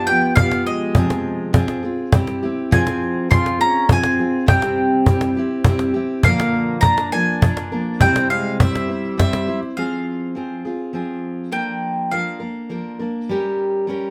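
Opening together, a bright, double-strung bowl-back mandolin carries the melody over a full-bodied, jumbo steel-string acoustic guitar with audible finger squeak, while a clean, twangy, compressed pedal steel guitar adds a second line with volume swells and a woody, close and dry cajon with faint snares keeps time in this wistful, melancholic acoustic folk fragment in three, set in a moderate studio room, until the pedal steel and cajon drop out near 9.6 s and the guitar finally rings alone after 13.0 s.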